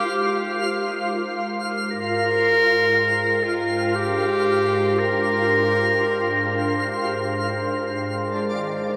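A bright, up-front solo clarinet sings a classical-style melody over a smooth, detuned analog pad with chorus that fades in on a Gm7/Ab chord. Beneath them, a very quiet Celtic harp rings out fingerpicked arpeggios, a twinkling granular texture adds octave-up shimmer, and a warbling, vintage analog drone with pulse-width modulation fades in just after the start. In this luminous ambient fragment in 3/4, cut from a longer piece and bathed in a huge, wet reverb, the clarinet falls silent at 7.6 seconds before the harmony moves to Abmaj7 at 8.1 seconds.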